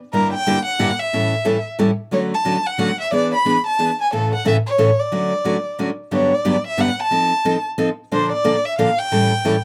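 Close, detailed miking with light reverb frames this charming, lively swung jazz piece in three, cut from a longer performance, as a warm bowed violin carries the melody up front with expressive vibrato, portamento and a soft attack over a bright picked steel-string acoustic guitar accompaniment, the harmony moving into a new section at 6.1 seconds.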